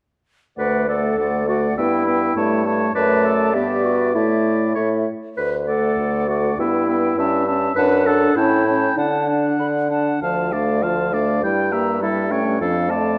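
A hollow, airy flute sits close in a wet recital hall, its vibrato and crisp attack carrying the melody over a soft-edged oboe second line in this spirited excerpt from a quick classical-period movement for wind quintet, moving at 100 BPM in 2/4 with a rubato feel in D major. A clear, present French horn and a smooth-topped clarinet supply the accompaniment, while a roomy bassoon with vibrato anchors the bass. From 10.2 seconds the harmony turns to D minor for a contrasting section that runs to the cut at 13.2 seconds.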